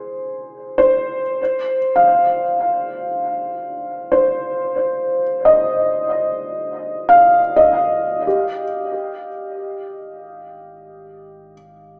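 The recording sounds dreamy and soaked in plate reverb, heard as if through a small speaker. It is a short fragment of a luminous, peaceful ambient piece in a straight 4/4 feel. A felt-muted upright piano plays arpeggios throughout, sitting up front with a soft, mellow, boxy and intimate tone, its notes trailing into a diffuse ambient delay. The harmony moves from Ab to Cmadd11 at 1.4 seconds, then settles on Ab5 at 8.3 seconds, where a round analog bass enters very faintly on a deep, sustained low note. That bass has a fast attack and a slightly nasal body, laying a dark floor beneath the piano until the fragment ends at 12.0 seconds.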